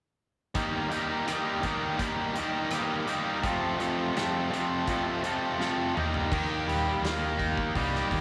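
Swaggering and brooding, this classic rock excerpt moves at 84 BPM in a straight 4/4, with a biting overdriven guitar and a bright, distorted electric guitar both picking up-front riffs over a big, natural-sounding rock kit with punchy kick, medium-tuned snare, bright cymbals, rim clicks and toms. The chords shift from Eb to F and back, and a drum fill at 5.6 seconds ushers in a new section at 6.3 seconds, where a growling, overdriven fingered bass joins with a punchy low end. A wet spring reverb and small-room ambience give the short clip its brooding, roomy sheen.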